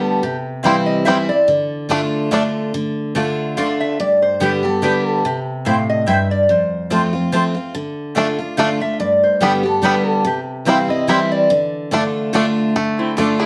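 Moderate studio reverb gives this bluegrass excerpt a modest sense of space, with a bright, full-bodied steel-string acoustic guitar sitting up front. The mood is haunting and rustic, moving at 144 BPM in a swung 3/4 in D dorian, with chords drifting through C, Dm, G and F. A mellow, metallic lap resonator guitar carries the melody, played with slide and fingerpicks, its nasal tone touched with slapback echo; it pauses briefly and returns at 3.6 seconds. The picked acoustic guitar accompanies throughout, while a woody mandolin with doubled strings adds stabs and a twangy, percussive banjo plays arpeggios, dropping out and coming back at 8.2 seconds. A clear, biting fiddle with light vibrato slips in with a second line only at 13.0 seconds, just as the clip cuts off.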